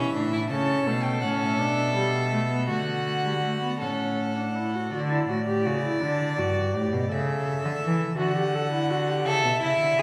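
A baroque-style fugue for string quartet opens with all four period-style players bowing together in D major, lively yet stately at 55 BPM in 6/8. The first violin carries a reedy, gut-string melody with light vibrato over a close second violin, a smooth-topped viola and a nasal, up-front cello bass. The second violin falls silent at 4.9 seconds as a new section begins and returns at 9.3 seconds, just as the viola stops, while a wet recital-hall reverb sets the quartet further back in the room in this passage cut from a longer piece.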